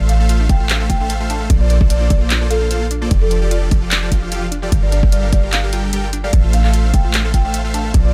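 Set in a digital ambience with a hard-clipped electronic kick up front, this euphoric, playful future bass piece at 149 BPM in half-time with a light 16th swing pairs huge, lush detuned supersaw chords and a deep, boomy 808-style bass, both pumping with sidechain, with a woody soft-mallet marimba melody carrying delay, a punchy ring-modulated unison pluck arpeggio with tape echo in the background, a very quiet airy sine lead arpeggiating with chorus and vibrato, and a trap kit of bright hats and handclaps, over a Dm7/A, Bbmaj7, F69, Gm9 progression.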